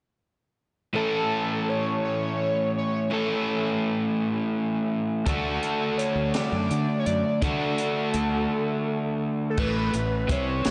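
A picked, overdriven electric guitar opens this wistful, jangly indie rock fragment at 0.9 s, its riff sitting up front with a slapback echo, and almost at once a gritty, screaming synth lead joins with a sustained, guitar-like melody coloured by phaser, digital delay and vibrato. At 5.3 s, as the harmony moves to a new chord, a growly fuzz bass played with the fingers enters alongside a compact cocktail drum kit of kick, snare, hi-hat and crash cymbal. The kit sounds smooth and small-roomed, with a high-tuned snare, a punchy kick and a rolled-off top. The unhurried 6/8 sway carries the parts into a brief break before a new section begins at 9.6 s. A lush hall reverb gives the mix a big arena sound with nothing above 10.5 kHz, and the recording is cut from a longer piece.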